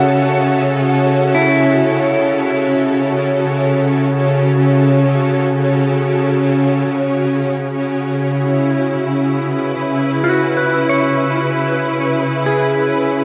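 A slow, straight 4/4 pulse at 54 BPM carries this melancholic, spacious ambient piece in C# minor, where an up-front symphonic string section, smooth with light vibrato, holds sustained chords moving from F#m7/C# to C#m7 at 6.9 seconds, while a dark, clean electric guitar plays fingered arpeggios through tape echo from the start until 2.7 seconds and again from 10.2 seconds, the mix set in a huge, wet reverb and the warbling pitch drift of worn cassette tape.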